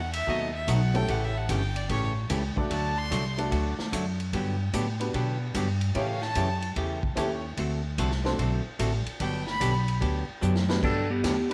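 Light reverb and small-room ambience frame this down-home, swinging western swing excerpt at 148 BPM in G major, where a clear, focused fiddle with light vibrato carries the solo in short bowed phrases over a woody, thumpy upright bass, a dark, hollow-bodied archtop guitar, a jangly, metallic tack piano and a distant big-band drum kit with dark cymbals, until a drum fill at 10.4 seconds hands off to a compressed, scooped lap steel with volume swells entering up front at 10.8 seconds.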